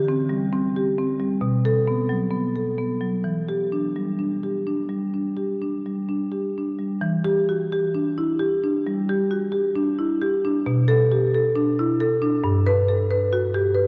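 A solo marimba played with medium mallets opens this flowing, hypnotic contemporary classical excerpt in E minor, its woody rosewood tone sitting up front as it moves with rubato at around 62-69 BPM through chords such as Em7, Bm7 and Gmaj7, all bathed in a cathedral reverb and the worn, warbling pitch drift of old cassette tape.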